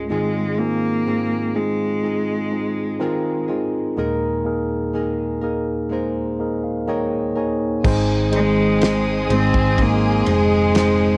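A tender, emotional pop ballad, cut from a longer piece, with the hazy feel of a home cassette recording in light reverb. A clear, bowed solo cello carries the melody with smooth vibrato, up front yet slightly distant, over a mellow, clean tine electric piano and small, bright fingerpicked nylon-string guitar arpeggios, with the electric piano taking a fill from 5.9 seconds. At 7.8 seconds a lush violin section adds a second line, a soft sul tasto string section sustains chords, a dark, round hollow-body electric bass enters, and a damped 70s drum kit brings a fat snare and tight kick.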